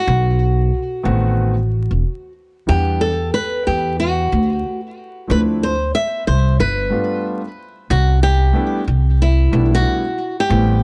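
Jazz-hop at 92 BPM with a smooth, warm mood: an up-front fingerpicked flamenco guitar carries the melody through tape echo, a woody, thumpy pizzicato upright bass anchors the low end from 0.1 seconds, and an intimate vintage grand piano with audible action noise enters at 1.0 seconds to comp over chords moving from B7b9 through Em9, Dm9 and G7 to Cmaj13, all in a dry, gritty recording dusted with vinyl crackle, in this excerpt cut from a longer piece.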